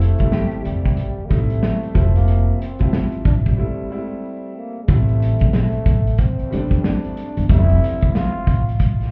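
A growling, raspy trombone with tape echo carries the melody over a boxy upright piano, pizzicato upright bass and a vintage drum kit, while a dark, clean electric guitar with chorus and tape echo sounds in the background only until 1.6 s. This smoky, nocturnal jazz-hop fragment, cut from a longer piece, swings on its sixteenths, with the thumpy bass and punchy kick up front, audible action noise from the woody piano, and a break at 3.6 s. The whole mix sounds muffled through a wall, with club reverb and vinyl crackle.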